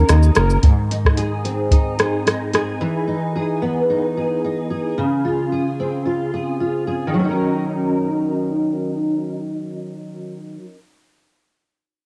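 At 110 BPM in 4/4 with a gentle swing on the sixteenths, this short lonely, mellow slice of indie and bedroom pop in Eb dorian brings in a soft vintage rhythm box just after the start, at 0.1 seconds: a deep kick, metallic hats, rim click and shaker, overdriven and up front, playing only until 2.7 seconds. A chorused synth bass with a glossy, detuned pulse-wave tone and a plucked filter sounds only briefly at the very start, ending by 0.6 seconds. Carrying the piece through to 10.8 seconds is a fingerpicked steel-string acoustic guitar, dark and full-bodied, treated with ensemble chorus, a warbly pitch drift and cassette tape coloring. The harmony moves from Ebm7 through Ab, Emaj7 and Dbmaj7 before returning to Ebm7 as a new section begins at 7.1 seconds. Light reverb and digital ambience sit over a home cassette recording, tuned slightly flat, giving the fragment a hazy, intimate feel.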